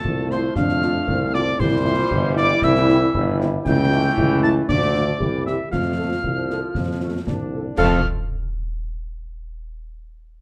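A warm, reverberant studio sound carries this proud, festive military-style wind-band march at 116 BPM in 2/4 and F major, with a smooth-topped solo cornet melody, a pure, tongued piccolo and a distant, mellow euphonium on second lines, a tight French horn section entering in the background at 0.3 s, soft-attack trombone chords, an up-front tuba bass with light vibrato, and close concert bass drum, snare drum and dark clash cymbals, all in a short excerpt cut from a longer piece.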